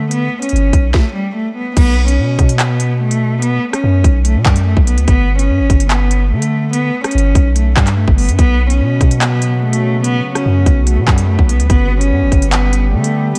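A single bowed cello leads this menacing drill excerpt, its warm, intimate tone shaded by light vibrato, a soft attack and an airy, sul tasto bow, with a low-pass filter and tape echo softening its edges as it plays close and up front. Set at 145 BPM in 4/4 with a half-time feel in B minor, the track circles between G and Bsus2 chords, giving it an ominous, unresolved pull. Beneath the cello, a deep, sine-like 808-style bass holds long, decaying notes with a fast attack, sitting prominently in the mix. The electronic drill kit is equally forward, with a hard-clipped kick, sharp snare, crisp hi-hats, handclaps, rim clicks and a crash cymbal, and a brief stop from 0.9 to 1.8 seconds before the main groove takes hold. At 9.1 seconds a warbling, nostalgic lo-fi pad fades in quietly underneath, its detuned, mellow chords blurred by chorus and its own reverb, while a light reverb frames the whole piece.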